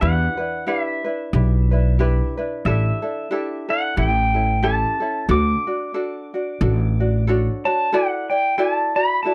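Hawaiian music with a relaxed, languid swing, this short cut from a longer piece moves through Em7, A7sus4 and A7 to Dmaj7 before settling on Dadd9. Up front, a clean, compressed electric pedal steel guitar carries the melody with fingerpicks, slide and volume swells, while a mellow tenor ukulele adds light fingerpicked accompaniment. A woody, thumpy upright bass on gut strings plays pizzicato until 7.5 seconds, all captured in a dry, close 1970s-style studio sound with light reverb.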